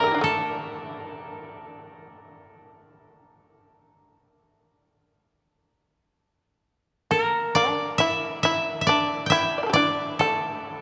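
Koto and shamisen begin together in this calm, austere passage of Japanese traditional chamber music, cut from a longer piece, with the up-front, woody, fingerpicked koto carrying the melody and the bright, buzzing, plectrum-plucked fretless shamisen adding a percussive second line in A in sen at a free, rubato 58-70 BPM, all set in a cathedral-like room with a long reverb as the music moves into a new section at 5.7 seconds.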